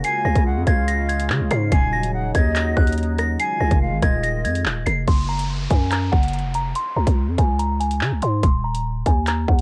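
A half-time drill groove at 143 BPM anchors this ominous, cold hip hop excerpt, with an electronic drill kit of hard-clipped kick, metallic hi-hats, handclaps and rim clicks sitting up front alongside a growling, buzzy 808-style bass with a fast attack and decaying tail. Over them, a delicate, tinkling FM synth tine bell carries the melody high in its register, softened by chorus and a low-pass filter, and from 5.1 seconds a filter sweep moves across it. In the opening stretch, an airy, reedy silver concert flute with a straight, tongued tone and rolled-off highs plays a second line through analog delay until 4.6 seconds. Beneath it, an evolving, detuned sawtooth pad with a resonant filter swell, slow attack and long release holds sustained chords with chorus until 5.1 seconds, moving from Db through Ebm7 to Fm7. After that point, the harmony shifts to a rootless Ab7sus2, then Db5 and Eb5, while a faint electronic downlifter sounds between 5.1 and 8.4 seconds. 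The mix is dry and gritty, with a cassette-tape hardware character and little reverb.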